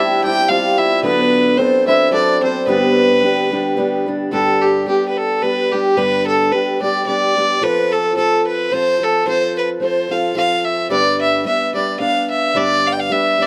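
Celtic folk waltz in 3/4 at 109 BPM, bright and rollicking, with a swung lilt in G mixolydian, cut from a longer piece. A single bowed fiddle with a reedy, gut-string tone carries the melody up front, while a shimmering hammered cimbalom adds a ringing second line until 6.8 s and a very quiet, hollow wooden baroque flute with vibrato sits distant in the background. Underneath, a dark, boxy fingerpicked ladder-braced acoustic guitar with old strings provides woody accompaniment through changes from C and D7 to G, F and back to G, captured with close, detailed microphones and light reverb.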